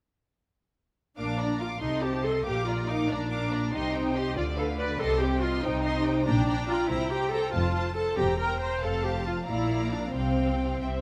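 At 1.2 s a string orchestra enters together in a quick, graceful classical-period movement in 6/8 at 94 BPM, with lush first violins singing the melody above a smooth, even second violin line and an up-front viola accompaniment touched with portamento. Focused cellos and close double basses carry the bass beneath, while a moderate scoring-stage reverb with a 1.9 s decay gives the cheerful passage its air. The harmony moves from Bb through C minor and F before arriving at a Csus4 at 10.1 s, after which this excerpt of a longer piece breaks off.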